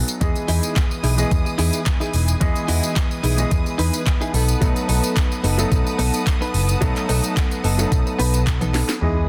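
A bright, clean electric guitar riff opens this sunny, groovy nu-disco excerpt at 109 BPM, its compressed, picked tone softened by lush chorus, tape echo and a low-pass filter, alongside a clear baby grand piano whose accompaniment pumps with the sidechain over Emaj7 moving to B7. An overdriven, thumpy electronic kick sits up front with a round, dark picked bass, while a layered house kit adds a cracking snare, crisp hats, handclaps, tambourine and toms in studio reverb, and a rich, smooth string section sustains vibrato chords that also pump beneath the groove. A drum fill at 8.6 seconds leads into a sub drop impact at 9.0 seconds, all within a dense, heavily limited modern master.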